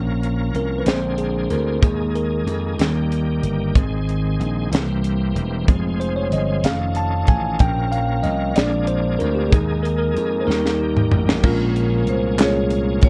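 A bell-like tine electric piano takes the lead in this soulful, jubilant slow gospel excerpt in a straight 6/8, playing a clean, direct solo across the first section. Beneath it, a tonewheel organ holds full, shouting sustained chords with key click, chorus vibrato and a slow rotary speaker, while a punchy, amped slap bass sits up front. The acoustic fusion kit has a smooth, rolled-off top, a high-tuned snare and a tight kick, and it rolls into a drum fill at 10.5 seconds. At 11.4 seconds a percussive marimba struck with hard mallets picks up the melody for a new section, and a close, crisp group handclap sounds briefly at 12.4 seconds. The production is dark with little reverb, and the harmony moves through minor, suspended, augmented and seventh chords before the passage is cut off.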